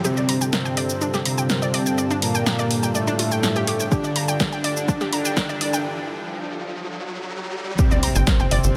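Drenched in a huge ambient reverb, this cinematic, dramatic melodic techno excerpt builds over a background riser as a smooth, full-bodied supersaw melody pumps against a thick, vintage unison pad, bright detuned pluck arpeggios with dub echo, a nasal analog drone, a faint, nostalgic lo-fi tape-like pad and punchy, overdriven drum-machine hi-hats, shaker and snare, with a deep, layered kick entering at 3.9 s before a break at 5.9 s and an impact at 7.8 s that ushers in a tight, driving sawtooth sequencer bass.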